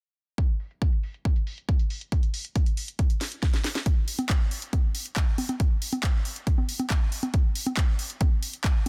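Dry, dense and heavily limited, this short trance cut at 138 BPM in a straight 4/4 feels euphoric and uplifting from its start at 0.4 seconds. A punchy, layered electronic kick sits up front beside an overdriven house kit of congas, handclaps, bright hi-hats and a cracking snare, with low-pass filtering on the hats, snare and percussion. A drum fill at 3.2 seconds leads into a new section at 3.9 seconds.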